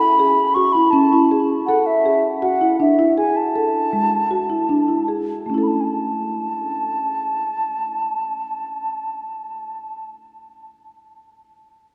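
Playful and restless, this short excerpt of contemporary chamber music moves in 5/4 at 157 BPM in A major, with a mellow wooden flute carrying the melody high above marimba arpeggios played with medium mallets on padauk bars. Both parts sit up front: the flute sounds pure and crisp-edged with vibrato, while the marimba rings woody and warm. The tempo slows from 2.4 to 5.5 seconds before the harmony settles on A, and a long cathedral reverb bathes the pair in the resonance of a church or concert hall.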